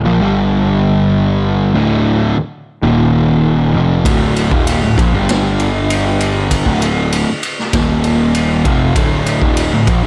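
This stoner and doom metal excerpt opens with a dark, double-tracked fuzz guitar riff pressed up front over a growly, overdriven picked bass, cycling through G5, D5, Eb5 and D minor in a hypnotic, heavy loop. At 4.1 seconds a raw garage drum kit enters with a boomy kick, a medium-tuned snare and ride cymbal, its gritty, saturated sound carrying a rolled-off top. Light reverb and small room ambience surround the playing.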